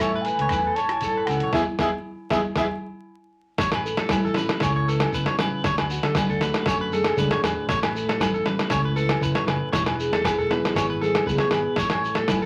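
A sunny, warm highlife guitar band groove at 117 BPM in A major, this excerpt opens with a mellow wooden baroque flute melody, shadowed in the background by a smooth jazz-style trumpet with scooped notes, both stopping by 2.7 seconds as a band accent and drum fill carry into the next section at 3.6 seconds. Underneath, a full-bodied fingerpicked jumbo acoustic guitar with audible finger squeak and a twangy, slightly broken-up electric guitar playing arpeggios ride over a dark, round fingered bass, while a compressed, pitched-down sampler-style kit with a thumpy kick sits up front. Ringing agogo bells, soft-handed congas and a grainy shekere fill out the percussion, all wrapped in a club-room ambience with vinyl crackle as the chords move between Aadd9, E and D.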